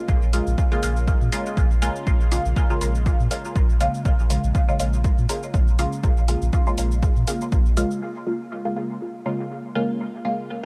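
A muted, detuned sawtooth dub chord stab on Bbm7, up front with phaser, dub echo and sidechain pumping, opens this hazy, cavernous dub techno excerpt at 121 BPM in Bb minor with a 16th-note swing, joined at 0.1 s by a round, mellow sine sub bass that also pumps, a punchy overdriven analog kick, and a layered, overdriven electronic cabasa and hi-hat, before these three parts fall away by 8.0 s and leave the filtered stabs alone until 10.6 s in a dark, dry mix.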